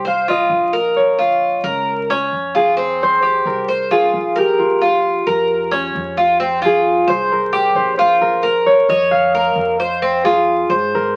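In a straight four-beat Cuban son and guajira feel, this sultry excerpt sets a bright, ringing thumb-plucked concert harp melody up front over metallic, double-stringed tres arpeggios, with a woody, thumpy pizzicato upright bass sitting dark and low beneath, all heard through the crackle of a very old 78 rpm record.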